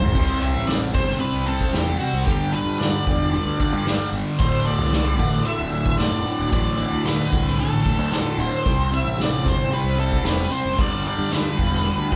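A bright, double-tracked fuzz guitar sits up front with a compressed, phased riff, while a darker octave-fuzz lead guitar carries the melody above it in this trippy, hazy psychedelic rock piece at 113 BPM in 4/4. Underneath, a round, overdriven fingered bass gives punch, and a distant, roomy drum kit played with soft mallets opens with a fill at 0.0 seconds. The band plays live in one room with a wet, large studio reverb, moving through power chords on C, G and D.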